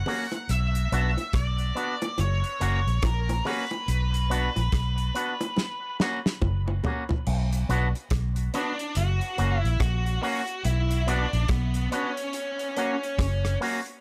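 A lightly reverberant, dark-toned mix puts a round, foam-muted electric bass and a dry, damped 70s drum kit up front in this serious, hypnotic roots reggae excerpt in B harmonic minor. At 71 BPM in 4/4 with a swung sixteenth-note feel, the kit's tight kick, medium-tuned snare, rim clicks, hi-hat, toms and dark crash cymbals carry a rolled-off top, while the bass holds the bottom between F#1 and B1. An octave-fuzz lead guitar with a distorted, fuzzy edge and dub echo sings the melody, and a clean, picked electric guitar through an envelope filter, also treated with dub echo, supplies the accompaniment. Low-tuned, hard-handed bongos with a vintage, band-limited sound add percussion until about 7.2 seconds, just as a drum fill from 5.6 seconds leads into the second section. The harmony simply alternates between Bm and F#, giving the fragment its steady, trance-like pull.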